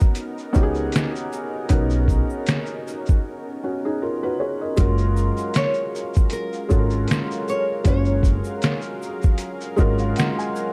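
A muffled, sampler-style drum kit sits up front in this nostalgic, dreamy lo-fi hip hop excerpt, its thumpy kick, fat snare, hi-hat, finger snaps and shaker pitched down, compressed and overdriven, with the feel of being re-recorded in a small room. At 78 BPM in 4/4 with a gentle swing on the sixteenths, a soft, felt-muted upright piano carries the mellow, intimate accompaniment, while a woody pizzicato upright bass on steel strings anchors the low end. Behind them, a lush, nasal unison pad of detuned sawtooth voices holds slow-attack chords through a chorus effect, and a grainy tube shaker sits close and dry in the background. The harmony moves from Bmaj9 to F#maj9 in F# major, with a break at 3.2 seconds. A fingerpicked nylon-string guitar enters with the melody at 5.6 seconds, and the piano adds a fill from 9.4 seconds, all within a dark, warm production.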